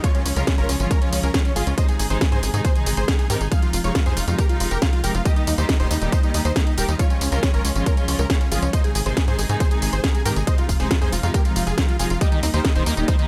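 At 138 BPM, this soaring, euphoric uplifting trance cut in F minor features a punchy, overdriven electronic kick up front beside a layered house kit of hi-hat, cracking snare and tambourine, while a tight, nasal sequencer bass plucks under a huge, airy, detuned supersaw lead with dub echo and sidechain pumping. A distant, woody symphonic string section holds lush bowed chords through the Db–Ab–Fm7–Eb progression, a barely audible downlifter sounds until 1.8 seconds, and a squelchy, resonant acid bass with chorus slips in at 12.2 seconds, all in a dry, close mix.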